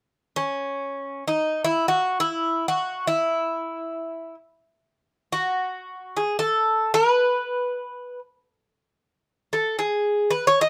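A Greek bouzouki enters at 0.4 s and carries the melody through to the end at 10.7 s, its picked double strings ringing with a mellow yet metallic tone. This short excerpt of Greek folk music unfolds in free time in E major, giving it a peaceful, unhurried mood. The melody moves within a range from C#4 to D#5, and some of the strings are doubled at the octave, adding a shimmering fullness to the acoustic sound. The instrument sits up front in the mix, with a light reverb lending a gentle sense of space. Cut from a longer performance, it leaves a calm, warm impression.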